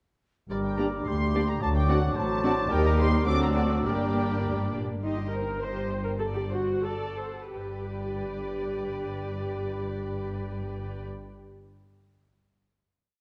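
A quick, stormy classical-period movement for symphony orchestra in 2/4 with a rubato feel, where veiled, con sordino studio violins carry the melody with a rocking two-note figure over muted chamber violins and violas playing after-beat chords, while cellos hold a sustained bass that answers at phrase ends, doubled by the double basses; a pure silver flute, a mellow oboe and a roomy bassoon weave independent inner lines in the background until 4.7 s, and a very quiet, dark French horn section adds short accented chords, before the music slows from 4.4 s into a brief coda and a final chord at 7.5 s, held in a moderate concert hall reverb.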